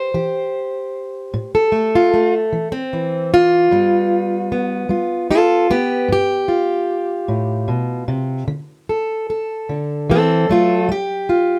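A fingerpicked steel-string acoustic guitar, plugged in and sitting up front, opens this short cut from a longer acoustic country blues piece and carries it alone for its full 11.6 seconds. The mood is laid-back and soulful, moving at a slow 50 beats per minute in a straight 12/8 feel. The guitar has a boxy, parlour-sized tone, spanning from G2 up to C5. Its harmony starts on A5, shifts to G7 at 3.7 seconds, moves to D7 at 8.5 seconds, and settles back toward G7 near the close. The sound is dry and intimate, caught by close, detailed microphones that bring out every nuance of the picking.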